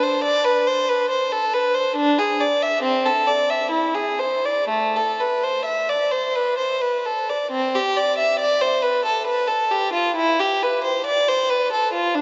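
Classical, baroque-style suite movement for unaccompanied violin, solemn and introspective in mood, heard as a short passage cut from a longer piece. A single bowed violin plays alone for the full 12.2 seconds in a triple metre, with a freely pushed and pulled rubato pulse. The instrument has a gut-string, period-style tone with a reedy edge, sitting up front and ranging from A3 to E5. A cathedral reverb with a long 5.2-second tail surrounds the playing, letting each phrase hang in the air. The top end is rolled off, giving the recording a dark, mellow glow, and the opening phrase returns at 7.5 seconds.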